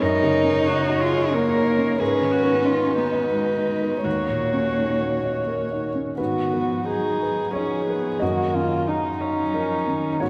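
Neoclassical piano and strings in G# dorian, a reflective, fragile excerpt at 89 BPM in 3/4 with a rubato feel, cut from a longer piece and heard in the wet reverb of a church or concert hall. A single bowed violin carries the melody up front with dark, smooth-topped vibrato, a close, woody cello plays a second line sul tasto, and a floating, pure viola adds soft-attacked accompaniment. An intimate upright piano with audible action noise supports them throughout the 10.3 seconds over chords moving between D#m7/F#, G#m7 and D#m7, with a new section beginning at 6.2 seconds.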